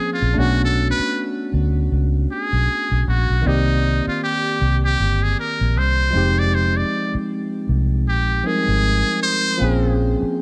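Late-night and sultry, this short R&B excerpt at 78 BPM with a gentle sixteenth-note swing features a buzzy, metal-muted trumpet soloing up front with light vibrato over barky, clean tine electric piano chords touched with tape echo and a round, punchy, foam-muted fingered electric bass that enters at 0.2 seconds, moving through lush minor ninth chords from Bm9 to Bbm9 in an echo-heavy mix with light studio reverb and some lossy compression artefacts.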